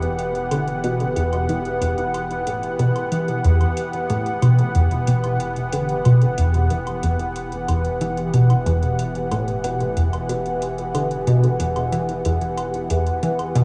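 A straight 4/4 pulse at 92 BPM drives this mysterious, hypnotic passage of ambient, sequencer-driven space music in E minor, cut from a longer piece. A tight sequenced synth carries the riff from start to finish, its detuned sawtooth and square-wave tones sharpened by a plucky filter and colored by chorus, phaser and analog delay, while a filter sweep moves across its arpeggio throughout the 13.6 seconds. Above it, a sweeping resonant pad sits up front with sustained chords on Emadd9, airy and bright, with a noise layer, a slow attack and a long release that let the sound evolve. Deep in the background, a round analog bass holds a dark, low E. Electronic hi-hat and woodblock add metallic, analog ticks with analog delay. A huge ambient reverb, cassette tape coloring and small room ambience wrap the whole mix in a hazy, distant atmosphere.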